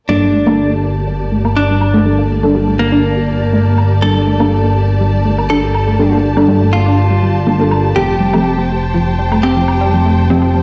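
Emotional and bittersweet, this short progressive house excerpt in G minor moves at 122 BPM in a straight 4/4, its chords shifting from Gmadd9 to Fadd9 at 8.0 seconds. A clean, picked electric guitar carries the melody through tape echo over lush bowed strings with expressive vibrato, while a punchy, detuned unison pluck plays echoing arpeggios under a filter sweep and a deep, dark chord stab adds soft decaying hits coloured by chorus and phaser. Underneath, a fat, thick analog bass sits up front beside very quiet, smooth electronic hi-hat and woodblock, all set in a stone room reverb as if played on a big sound system in a bare room.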